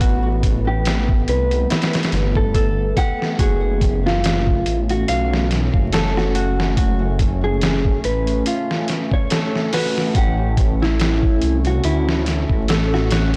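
Over a gritty, pitched-down sampler drum kit with a thumpy kick and a light 16th-note swing at 71 BPM, this brooding, hypnotic trip hop passage in F# minor layers a rumbling detuned saw bass up front, a deep, moody pad of sustained chords with chorus, fingerpicked nylon-string guitar arpeggios with delay, a very quiet breathy wind-like noise texture, and a clean, mellow electric guitar melody with tape echo that enters at 0.7 s, the whole mix sounding blown-out and overdriven with vinyl crackle.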